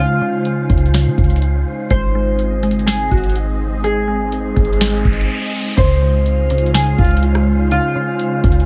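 A deep, boomy 808-style bass sits up front with a booming analog drum machine entering at 0.5 seconds, its crisp snare and metallic hats carrying a tape-warm edge alongside a mellow electric guitar melody, a glassy, ethereal FM pad pumping with sidechain, a woody mallet-like pluck arpeggiating in the background and an airy, breathy wind-like texture, as this blissful, floating half-time cloud-rap excerpt moves from Dbmaj7 to Ab, with a riser from 4.6 seconds and a brief break before returning to Dbmaj7 at 5.8 seconds.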